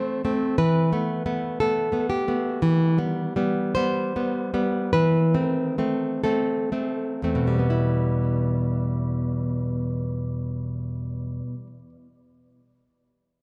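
Set in a rubato 2/4 that drifts between 39 and 60 BPM, this romantic solo classical guitar piece in E minor unfolds with a melancholic, intimate air, tuned to A4 = 438 Hz. A fingerpicked nylon-string guitar carries everything alone, up front and full-bodied, its fresh strings ringing from a deep E2 up to C5, with a touch of tape echo on its tone. The harmony moves from Am through Emadd11 and Em to Am/E, and the tempo slows from 1.6 seconds until the second passage begins at 7.7 seconds on an Em chord. The guitar falls silent at 11.9 seconds, as this fragment is cut from a longer piece. A moderate recital hall reverb and a dark, warm production surround the instrument.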